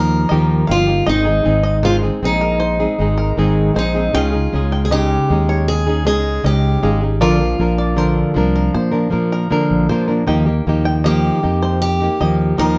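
Heartfelt and sunny, this short pop clip moves at an unhurried 78 BPM in a straight 4/4, set in Eb major and cut from a longer piece. A bright, picked acoustic archtop guitar carries the melody up front, staying between Eb4 and Bb4 across the full 12.8 seconds. Beside it, a fingerpicked flamenco guitar supplies accompaniment with a warm, up-front presence, while a twangy, percussive bluegrass banjo, played with fingerpicks, adds arpeggios higher up, sitting further back in the blend. A direct, amped fretless electric bass anchors the low end from G1 to Bb2, also placed up front. The harmony moves from Ebadd9 through Ab, Dbsus2 and Bb before returning to Ebadd9 at 10.3 seconds, and the band sounds as if playing live together in one room, with a moderate studio reverb.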